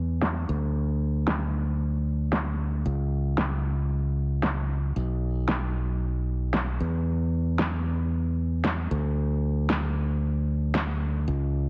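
A straight 4/4 feel drives this sensual, groovy nu-disco fragment, cut from a longer piece. A bright, direct fingered electric bass sits up front across the whole clip, moving between B1 and E2, while an electronic drum part enters at 0.2 seconds with a fat, layered snare set forward and softened by a low-pass filter, low-pass-filtered hats and a small room ambience. Light digital reverb surrounds the mix, and heavy multiband compression gives it a dense, radio-ready sheen.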